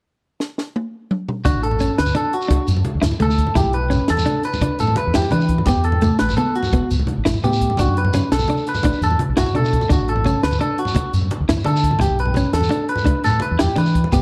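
A compact cocktail drum kit opens this sunny, joyful highlife cut with a fill at 0.4 seconds, its high-tuned snare and punchy kick up front, before the full band enters around 1.5 seconds in a straight 12/8 at 114 BPM in D major. A twangy, compressed clean electric guitar plays arpeggios up front with subtle chorus and tape echo, while a darker clean guitar adds accompaniment through spring reverb. Beneath them sit a round fingered electric bass, low-tuned congas struck with hard hands in the background and a grainy, distant shekere, all cycling through D, Em, Asus2 and Bmadd9 in a close, dry 1970s-style small-room sound.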